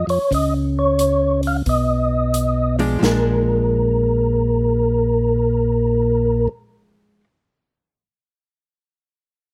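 This bluesy, greasy soul jazz organ trio opens with two tonewheel organ parts up front: a soft, flute-like melody voice with percussive second-harmonic attack, chorus vibrato and a slow rotary speaker, and a smooth, clean bass line with audible key click, also turning through a slow rotary. An acoustic big-band drum kit swings underneath at 89 BPM in 4/4 with swung eighth notes, its punchy kick, medium-tuned snare and hi-hat carrying a hall-like character, until it drops out around 3.2 seconds. The harmony moves from a chordless opening to B6 and then Bb7 in a Bb mixolydian setting. A dark, compressed hollow-body electric guitar, picked cleanly and heard through a miked amplifier, comes in at 2.8 seconds as accompaniment and carries on after the organs stop. The sound is dry and closely miked, with fine detail in every attack, and the passage feels cut from a longer performance.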